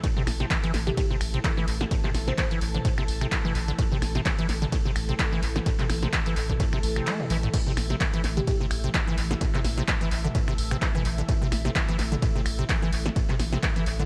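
Lush vintage string-machine chords with ensemble chorus and sidechain pumping open this driving, raw acid house excerpt in A minor at 128 BPM with a 16th-note swing, alongside a squelchy, resonant square-wave acid bass riff with filter sweep, tube saturation and tape echo, a dry, punchy electronic kick, and an up-front analog drum machine of punchy snare, handclaps, finger snaps, hi-hat, ride, crash and toms, while a deep, saturated sub bass pumps in from 0.3 s, a sparkling, bell-like FM electric piano with chorus and analog delay adds brief background figures at 0.9 s, and the kick drops out at 7.1 s in an echo-heavy mix with light digital ambience.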